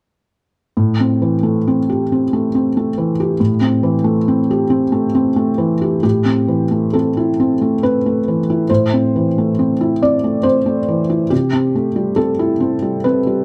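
In a triple metre played with free, rubato timing, this short excerpt of neoclassical minimalist piano drifts by in an intimate, peaceful mood. A single felt-muted upright piano carries the whole piece alone from 0.8 seconds, ranging from A2 up to D5. Its tone is soft and mellow, set up front by close, detailed microphones that catch the audible action noise of the instrument along with its natural character. The harmony opens on an A minor seventh chord, and a second section begins at 6.0 seconds before the music settles onto a C6 chord at 11.3 seconds. Light reverb surrounds the piano, keeping the sound hushed and close.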